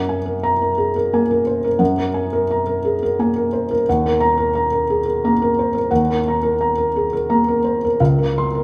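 A felt-muted upright piano sits up front in a wet stone room, its soft, mellow tone ringing into a natural reverb that lingers for about 1.4 seconds, with the mechanical noise of its action clearly audible. This short excerpt of neoclassical minimalist piano is cut from a longer piece and unfolds in 6/8 with a rubato feel, melancholic and wistful in mood. The piano plays alone throughout, spanning a range from Db2 up to C6. Its harmony opens on Gbadd9, moves to Ebm at 3.9 seconds, and arrives on Bbmadd9/Db at 8.0 seconds as the fragment closes. The close, intimate placement of the instrument against the stony ambience gives the passage a private, reflective quality.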